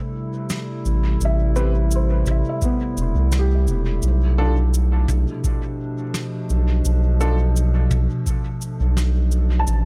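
A lightly swung 85 BPM groove in 4/4 anchors this meditative, hazy ambient dub fragment, with a brushed jazz kit of cabasa, high-tuned snare and toms entering at 0.5 seconds through dub echo, a round, deep analog bass sitting up front from 0.9 seconds, and an overdriven electronic kick pushing forward between 2.6 and 8.4 seconds. Over an Am7 moving to Bm7b5, a warbling, detuned tape-like pad holds sustained chords with chorus and reverb, while a felt-muted upright piano spins soft arpeggios through tape echo, its action noise audible. A woody, slightly detuned second upright piano adds dark stabs through dub echo, and the whole echo-heavy mix sits in a small room.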